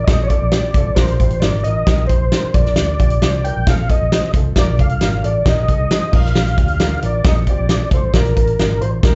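Heard through a club's PA with a muffled top end and a touch of room, this joyful, uplifting slice of uptempo 1960s-style soul moves at 134 BPM in Bb major, its chords rocking between Bb and F/Bb and Eb/Bb over a Bb pedal. A mellow tonewheel organ carries the melody with chorus vibrato, a slow rotary speaker and slapback echo, while a foam-muted fingered electric bass, round and tube-saturated, anchors the low end. An up-front acoustic drum kit with punchy kick, medium-tuned snare, hi-hat and crash drives the groove, and a worn, woody, slightly detuned upright piano sits low in the mix with audible action noise and its own slapback echo.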